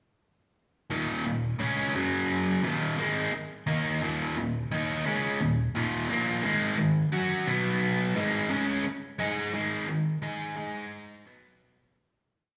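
In a straight 4/4 pulse, this short, sunny rock piece is a confident power-chord riff on a solo overdriven electric guitar, double-tracked, picked and up front, entering at 0.9 seconds. Its tone is warm and gritty, set in a wet large-studio reverb with the small-room ambience of a band playing live together. The riff moves between Eb5, Gb5, Ab5 and B5 shapes before fading out from 9.2 seconds to the end at 12.0 seconds.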